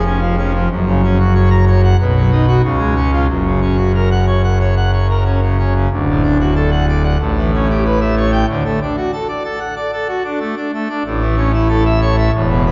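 A full pipe organ sounds at once, its mixtures blazing in a majestic, brilliant registration with a romantic voicing that sits up front and spans from the deepest pedal register to the upper treble. This classical organ toccata, cut from a longer piece, moves in a steady, straight four with a jubilant character. After a bright opening passage, the music shifts at 5.9 seconds into a new section in a different key, with a ninth chord adding color before the harmony settles back. The solo organ carries the whole recording through to 12.7 seconds. A long, wet church reverb surrounds the instrument, and the production is dark and mellow, with the highest frequencies rolled away.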